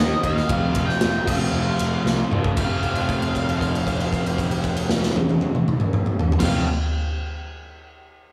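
A big rock drum kit sits up front with a punchy kick, medium-tuned snare and bright cymbals across crash, ride and toms, playing a fill from 2.1 to 2.6 seconds that ushers in the second section. This is swaggering, confident classic rock at 116 BPM in a straight 4/4, rooted in F mixolydian and cut from a longer piece. A double-tracked, crunchy overdriven guitar drives the riff with a picked, slapback-echoed tone, while a growly fuzz bass, overdriven and tucked in the background, anchors the low end. Above them, a dark octave-fuzz lead guitar with distortion and slapback echo carries the melody, and a held note sustains from 2.6 to 6.4 seconds. A lush hall reverb and a touch of small-room ambience give the whole band a big arena sound.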